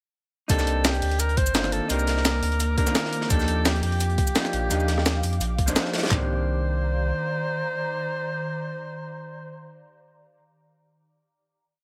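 A clear, vibrato-laced alto saxophone carries a dreamy, melancholic motif through tape echo in this liquid drum and bass piece at 171 BPM in C minor, over a dark hollow-body jazz guitar holding drop-2 chords with syncopated pushes, an ethereal pumping pad with chorus and phaser from 1.7 seconds, a deep, round sub bass with long gliding notes, gritty pitched-up sampler breakbeats layered with a saturated looped break and brief high-tuned bongos at 5.0 seconds, before the drums fall away near 6.1 seconds into a final Cm9 chord.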